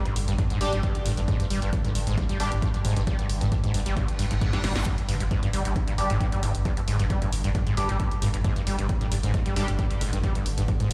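Driving peak-time techno at 134 BPM in a straight 4/4, hypnotic and intense, with a screaming, squelchy acid line up front, its resonant sawtooth riff distorted and given lush chorus, tape echo and sidechain pumping over a deep, saturated sub bass and a very quiet, swarming drone that evolves with a granular, detuned texture. A dry, punchy electronic kick enters at 0.4 seconds, joining an analog drum machine's hi-hat, snare and toms that are already under way, while an edgy sync-sweep polysynth sits in the background with nasal, detuned stabs. A reverse cymbal at 4.1 seconds leads into a brief drum fill, and the whole cut sounds as if played on a big system in a bare room with large studio reverb.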